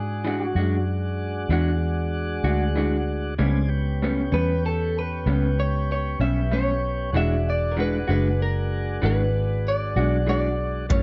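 A round, punchy, foam-muted bass anchors this laid-back yet rollicking 12/8 slow blues, cut from a longer piece, beneath a slightly broken-up picked guitar melody with subtle chorus, a second lo-fi guitar comping with tremolo, and smooth tonewheel organ chords turning through a slow rotary speaker over E9 and A9, all in a dark, dry mix until an analog drum machine's deep kick and metallic hi-hat arrive at 10.9 seconds.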